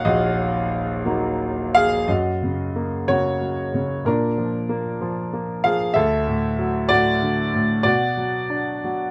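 Moving in 6/8 at roughly 58-65 BPM, counted in dotted quarters, the rhythm bends freely with expressive rubato throughout this short passage from a longer classical work. A concert grand piano plays alone, tender and peaceful in a lyrical vein, spanning from Eb1 in the depths up to Gb5. Its tone is clear and open, with a deep bass that gives the low register real weight. The harmony starts on E-flat minor, shifts to F-sharp at 2.1 seconds, and then passes through A-sharp and D before settling on B minor at 7.8 seconds. Close, detailed microphones place the instrument up front, while a light reverb adds a touch of space around it.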